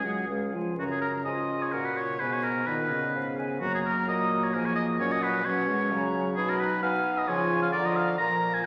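All five winds sound together from the start of this lively, graceful excerpt from a quick classical-period movement for wind quintet in F# major, in 3/4 at 130 BPM with a rubato feel: an airy, bright silver concert flute carries the melody with vibrato and a soft attack, a clear oboe sits up front on the second line, a distant, roomy clarinet and a mellow French horn with a smooth top fill out the accompaniment, and a bassoon with light vibrato holds the bass, heard through a wet concert hall reverb over a layer of vinyl crackle.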